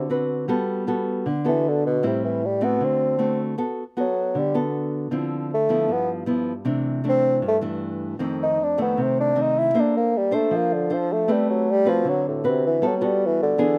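A mellow bassoon carries the melody from start to finish in this sunny, relaxed bossa nova, played in a classical style with a light vibrato and a slapback echo. It sits up front as the soloist, ranging from A2 to E4. Beneath it, a fingerpicked nylon-string guitar supplies a small, intimate accompaniment that is also close and present. The tune moves at 156 BPM in a straight 4/4 in G major, with lush harmonies such as Gmaj9, Dm9, C69 and Bbmaj9, and a brief opening phrase gives way to a longer restatement at 3.6 seconds. The dry, open-air recording adds almost nothing around the instruments, and this 13.8-second clip is cut from a longer piece.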